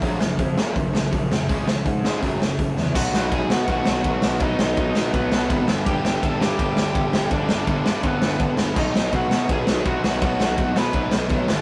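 A straight, driving 4/4 punk rock groove charges ahead in this rowdy, energetic excerpt, led by an up-front raw garage drum kit with a boomy kick, gritty saturation and a pumping stone-room sound, while a fuzzy, growly picked bass and a cranked stack guitar churn out overdriven riffs from the background. A very quiet, bright distorted electric guitar adds its own riffing, and after a drum fill at 2.8 seconds, a dark-toned lead guitar through a small cranked amp takes up the melody at 3.0 seconds. The whole thing has the rough feel of a rehearsal-room recording with light reverb.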